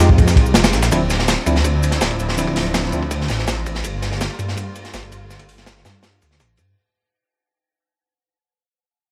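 Drum and bass with a jungle flavour, this nostalgic, atmospheric excerpt runs at 164 BPM in 4/4 with a straight feel, in D minor, cut from a longer piece that fades out from 0.9 seconds onward. A crunchy breakbeat kit sits up front, its saturated, rolled-off kick, ride and medium-tuned snare carrying high-pass filtering on the kick, cymbals, snare and room, while a second, sampler-style kit adds compressed hi-hat, shaker and snare, high-passed as well. Underneath, a deep, rumbling detuned saw bass holds sustained low notes with a beating unison character. A smooth, vibrato-laden studio string section lays down sustained chords moving from Fm9 to Dm9 and then Gm9 at 3.8 seconds. A bell-like tine electric piano, bright and clean but set in the background, plays stabs only until 3.0 seconds, roughened by vintage 12-bit sampler grit and a dub echo. A small room reverb and a layer of vinyl crackle frame the whole mix.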